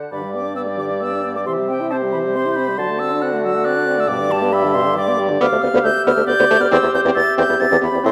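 In a brisk, straight 3/4 at 137 BPM, this cheerful, lively classical-period movement for wind quintet moves along in G major, heard here in a short cut from a longer piece. The concert flute carries the melody high in its range, its pure tone shaped by vibrato, a soft attack and expressive phrasing that sits up front. Beneath it, the bassoon anchors the bass with a warm sound and light vibrato, also close and present. The oboe adds a second line with vibrato from a distant, roomy position, while the mellow clarinet and the clear French horn fill in the accompaniment in classical style. The harmony passes through G, C and D7 before returning to G and moving on through G7/D and C/E, with all five players sounding together from 0.1 seconds onward. A moderate recital hall reverb of about 1.8 seconds gives the ensemble a natural sense of space.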